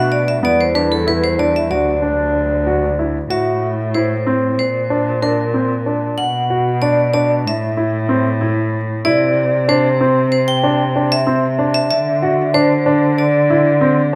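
A bright, ringing vibraphone struck with hard mallets carries the melody with fast motor vibrato in this shimmering, hopeful excerpt of contemporary chamber music in 9/8 at 188 BPM (eighths) in D mixolydian, over polished baby grand piano arpeggios and a dark, veiled con sordino cello bass with portamento, while a distant woodwind section holds sustained chords until 3.3 s, heard in a moderate recital hall through close, detailed microphones.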